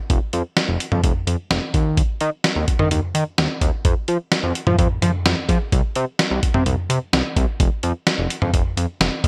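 A steady, straight 4/4 pulse at 128 BPM drives this bright, upbeat synth-pop excerpt, carried by a lo-fi sampler-style drum kit of thumpy kick, fat snare, hi-hat, toms and cowbell, compressed and muffled, sitting up front with gated reverb. Beneath it, a thick, detuned sawtooth analog bass with a filter sweep and fast attack holds sustained notes from F1 to F3, also placed up front. Light digital ambience and a bright 1980s-style digital production frame the short clip, which is cut from a longer piece and tuned to A4 = 438 Hz.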